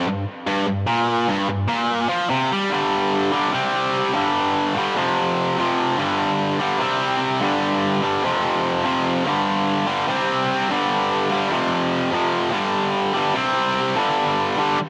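A tight, bright electric guitar, distorted and picked, sits up front and double-tracked, carrying this rock fragment on its own from start to finish. The tempo is 147 BPM in a straight 4/4, and the mood is sunny and confident. It opens on a rootless Fsus4, then at 2.7 s settles into a repeating cycle of power chords moving through G5, C5 and F5, ranging from F2 up to C4. Distortion and an analog delay thicken the guitar's sound. A moderate plate reverb with a 2.7-second decay adds space, while the top end is rounded off, and the clip is cut from a longer piece, ending around 14.8 s.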